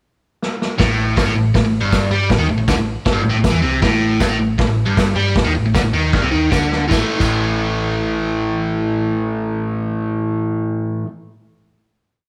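A rowdy, raw garage rock piece for a small band, played straight in 4/4 with the live feel of a group sharing one room under light reverb. A vintage acoustic drum kit opens with a fill at 0.4 seconds, its gritty, saturated sound up front with dark cymbals, a medium-tuned snare, a tight kick and a garage stomp groove. A biting, overdriven, double-tracked guitar drives a picked single-note riff from 0.8 seconds, doubled by a round, amped hollow-body bass carrying tube saturation and a driving eighth-note line. A very quiet, jingly tambourine adds its pattern from the live room. After a second drum fill, the band lands on a final A5 chord at 6.9 seconds, and the guitar rings on until 11.1 seconds.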